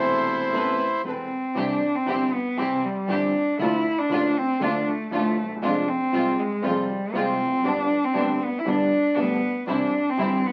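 Heard through the crackle of a very old 78 rpm record and a wet studio reverb, this passionate, dramatic tango fragment in C major moves at 118 BPM in 4/4 with a rubato feel. A reedy, bright bandoneon sits up front with the melody, but only for the opening second, giving way by 1.6 seconds to a cello solo. Played sul tasto by a single player, the cello is close and intimate, its airy bow, light vibrato and slightly nasal, boxy tone carrying the second line to the end at 10.5 seconds. Beneath it, a vintage grand piano accompanies with deep bass, smooth playing and audible action noise, while a distant chamber string section adds floating, pure bowed stabs with a soft attack. A dark, woody double bass, bowed with vibrato, stays in the background, and the harmony passes from C through D minor to a poignant F minor before G leads back to C.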